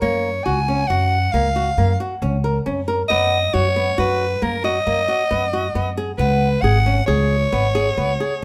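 A growling, raspy soprano saxophone carries the melody up front, with breathy vibrato and a pop-style punch, while a fingerpicked flamenco guitar spins arpeggios with audible finger squeaks and a pizzicato upright bass supplies a woody, dark low end. This hopeful, shimmering piece of contemporary chamber music moves in an uneven 7/4 metre with a straight feel, its harmony passing from Gbmaj7 to Cb/Gb and then Db5. Moderate studio reverb surrounds the trio in this short passage, cut from a longer piece, which ends at about 8.4 seconds.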